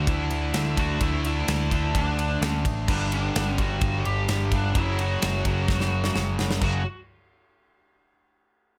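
Driving, aggressive hard rock at 128 BPM in a straight 4/4 feel in F# phrygian, where a dark, smooth lead guitar with overdrive and slapback echo carries the melody over two bright, overdriven distorted electric guitars playing picked riffs, one sitting in the background, alongside a round, punchy picked electric bass and an up-front, airy, polished big rock drum kit of crash, ride, snare and punchy kick that plays a fill from 5.7 to 6.6 seconds in light reverb, as the chords move from D5 to G5 to F#5 in this short cut from a longer piece.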